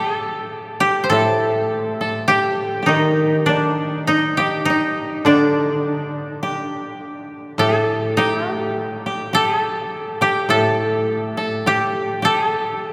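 A woody, up-front koto carries the melody through this calm, austere fragment of Japanese traditional chamber music, joined throughout by a brighter second koto line and a warm, low koto accompaniment, all three plucked with fingerpicks at a rubato 52 BPM in 4/4 with tuning at A4 = 439 Hz, while a church or concert hall adds a cathedral reverb with a 5.6-second decay.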